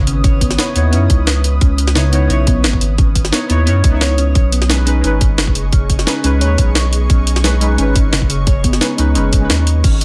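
Liquid drum and bass at 175 BPM with a lush, melancholic mood, this excerpt moves from C#m9 to B69 as a deep, saturated sub bass sits up front beneath a tight electronic kick and a gritty, pitched-up jungle sampler-style kit of snare, hi-hat and crash, while a dark, detuned chord stab with dub echo, a harp-like ringing pluck playing arpeggios through tape echo, and an ethereal, airy pad with sidechain pumping in the background fill out the digital ambience.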